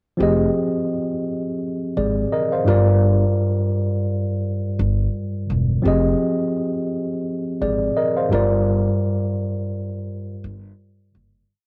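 At 0.2 seconds a tine electric piano and an upright bass start together, setting up a gritty, tough hip hop groove at 85 BPM in 4/4 with a light swing on the sixteenths and tuning at A4 = 441 Hz. The electric piano sits up front, worn and slightly out of tune, lightly overdriven and heard as if through built-in speakers with a cassette tape colour. It plays spread, held chords, moving from Fm9 to Gm7 and back, with short fills, repeated like a sampled loop. Underneath, the plucked upright bass gives a woody, thumpy tone from gut strings, playing a deep looped bass line with chromatic approach notes. The whole short piece sounds like a home recording on cassette with light reverb, and it fades out from 8.7 seconds to its end at 11.5 seconds.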